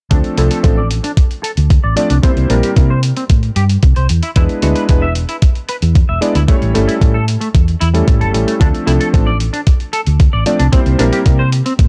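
Cosmic and groovy, this nu-disco excerpt in D minor moves at 113 BPM in a straight 4/4 over Dm7, C7, E7 and A7 chords, with a thumpy, up-front electronic kick and a gritty, overdriven electronic hi-hat joined by a round, hollow-body fingered electric bass, while a vintage electric grand piano with clangy lows, long sustain, sidechain pumping and tape echo carries the accompaniment and a bright, clean picked electric guitar riff, treated with analog chorus, tape echo and a filter sweep running from 0.1 to 11.9 seconds, glints through the mix in a dark, digital ambience.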